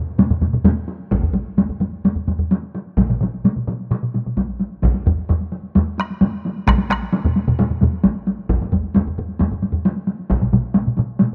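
A straight 4/4 pulse drives this powerful, ceremonial Japanese taiko drum ensemble, speeding up over its short span, cut from a longer piece. Four taiko parts build the sound: a vintage, band-limited part struck with hard sticks sits up front alongside a close, dry part played with heavy sticks, while a second heavy-stick part, equally close and dry, fills out the ensemble and a hard-stick part heard in a live room joins at 1.1 seconds. The small room ambience and rough home demo mix lend the percussion a raw immediacy, with the first heavy-stick part dropping out at 9.8 seconds.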